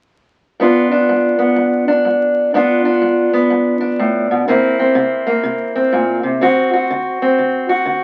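A swinging 4/4 groove at 124 BPM drives this short blues cut from a longer piece, soulful and rollicking in G mixolydian as it moves from G7 to C7 at 4.5 seconds and D7 at 6.4 seconds. A fingerpicked steel-string parlour guitar carries the accompaniment up front from 0.6 to 8.0 seconds, its old strings giving a dark, woody, boxy tone. Moderate studio reverb and the crackle of a very old 78 rpm record frame the playing.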